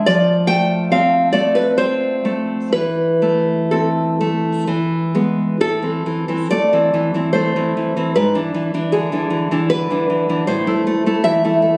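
A romantic piece for solo classical guitar in A minor, this intimate, melancholic excerpt moves in a rubato 3/4 at roughly 60-79 BPM, cut from a longer work. The fingerpicked nylon-string guitar sits up front with a deep, warm body, fresh strings and audible finger squeak, ranging from G#2 to G5 as the harmony passes from F through Am/E to E, then into a second section at 5.6 s that opens on Am, turns on E7/G# and settles back on Am. A phone recording in the room, it is wrapped in moderate scoring-stage reverb with a 1.6-second decay and compression.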